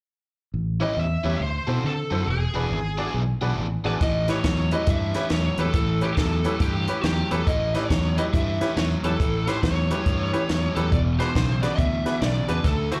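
A dark, round fingered electric bass sits up front in this gritty, laid-back electric blues shuffle, cut from a longer live club gig heard through the venue's PA, as a biting lead guitar with slapback echo carries the melody over a picked, overdriven semi-hollow guitar riff and brilliant baby grand piano accompaniment, and a dry, compact cocktail drum kit with a high-tuned snare and punchy kick joins at 4.0 s.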